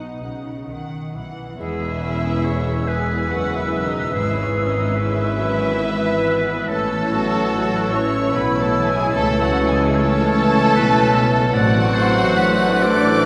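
Classical, a slow romantic orchestral movement in 3/4 and E major, moving at 63-76 BPM with a rubato, melancholic and solemn feel, cut from a longer piece and heard in a church-like space with a long, wet reverb. Muted violins carry a veiled, lush melody over a second violin line, a distant viola accompaniment, cello and double bass on the bass, and a very quiet, ringing harp playing arpeggios. At 1.6 seconds the winds and brass join: an airy silver flute, a clear, roomy oboe and a dark clarinet on second lines, a very quiet bassoon in the accompaniment, mellow French horns holding chords in the background, and a soft tuba on the bass, as the harmony moves from E through A toward F#m7b5/A.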